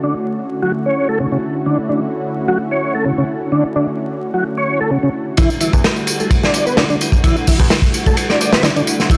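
Breakbeat at 129 BPM in E dorian with a funky, swaggering feel: a smooth tonewheel organ riff through slow rotary speaker, chorus vibrato and dub echo sits up front over a thick, warbling, detuned sawtooth pad with 12-bit sampler grit and sidechain pumping, moving from Dmaj9 to Em11 as a crunchy, saturated breakbeat kit with a punchy kick, dark cymbals and rolled-off top enters at 5.4 seconds alongside a tape-warm electronic tambourine, launching a build-up with a filter sweep on the organ, while a very quiet picked electric bass slips in at 5.7 seconds, all under light studio reverb and vinyl crackle in this excerpt cut from a longer piece.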